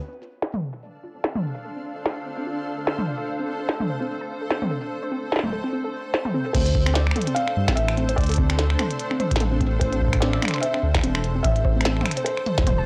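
Intricate and eerie, this IDM excerpt moves at 147 BPM in D minor with a lightly swung sixteenth-note feel, cycling between Dm7 and Am. A warbling, lo-fi pluck opens the piece with background arpeggios carried on chorus and analog delay, a filter sweep running through it across the first 6.5 seconds. A glitchy drum kit of clicky hats, a tiny snare, finger snaps, toms and crash cymbal sits up front behind low-pass filtering, while a cloudy granular pad drifts in with sustained chords that pump against the beat. At 6.5 seconds the low end arrives, a deep, tape-warmed electronic kick and a rumbling, detuned saw bass with a beating, saturated edge, alongside a felt-muted upright piano whose soft, intimate melody carries audible action noise and tape echo. The whole mix has a dry, gritty hardware character with transformer saturation, cassette-tape grain and a light reverb.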